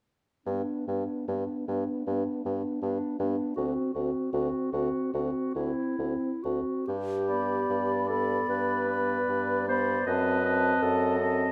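In a rubato 4/4 at 64-81 BPM, this tender, lyrical excerpt from a slow romantic classical movement for wind quintet in G major begins at 0.5 s with a mellow, vintage-toned French horn and a warm clarinet sharing the accompaniment over an up-front bassoon bass with light vibrato, before an airy, hollow silver concert flute takes the melody at 7.3 s with soft attacks and vibrato while a distant, roomy oboe adds a second line, the quintet set in a moderate recital-hall reverb as the harmony moves from G through D7 and back to G before reaching F#dim7 at 10.1 s.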